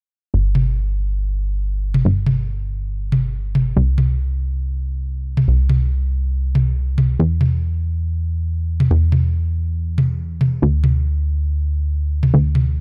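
Euphoric and soaring, this 140 BPM uplifting trance excerpt pairs a punchy, funky analog bass with tube saturation, its fast-attack filter pluck spanning G1 to E2 from 0.3 seconds, against layered, up-front electronic toms entering at 0.6 seconds, all set in a digital ambience.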